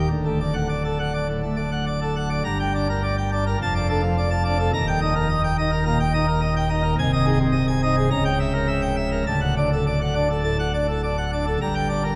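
A drenched church acoustic surrounds this recording, with a long reverberant tail of about 3.9 seconds hanging behind every chord. It is a classical organ toccata, majestic and stormy in mood, in a straight 4/4. A single pipe organ plays alone on full plenum registration, its mixtures giving a brilliant, baroque-voiced sound with audible chiff, placed up front against the resonant space. The range stretches from deep C1 notes up to Bb5. After a brief opening on D, the main passage begins at 2.5 seconds and moves through dark harmonies, including an Ab/C and a tense C#dim7, before returning to D and settling on G minor near the close. The recording is cut from a longer piece and runs 12.2 seconds.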